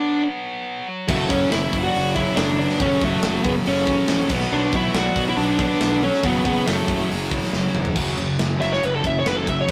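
A straight 4/4 heavy metal pulse drives this heavy, epic fragment, opening on an up-front, high-gain lead guitar melody over a bright, distorted background riff. At 1.1 s the rest of the band arrives: a double-tracked second riff guitar, a very quiet, dark sludgy guitar, a growly fuzz bass, and a tight acoustic drum kit with a medium-tuned snare and rolled-off top. A bluesy overdriven lead line sits in the background until 7.1 s, and a drum fill leads into a lead guitar solo at 8.0 s, all within a rough rehearsal-room sound with tube saturation and light reverb.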